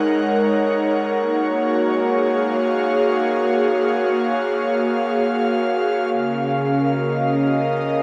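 An airy, breathy synth pad opens this serene ambient fragment alone, its soft triangle and sawtooth tones and a noise layer fading in slowly and sustaining up front with chorus and a diffuse ambient delay, moving from Ab7sus4 to Gbmaj9/Bb at 1.2 seconds. At 6.1 seconds the harmony settles onto a warm Db69 chord, with the pad's long release hanging in a dreamy mix soaked in huge reverb lasting 8.2 seconds.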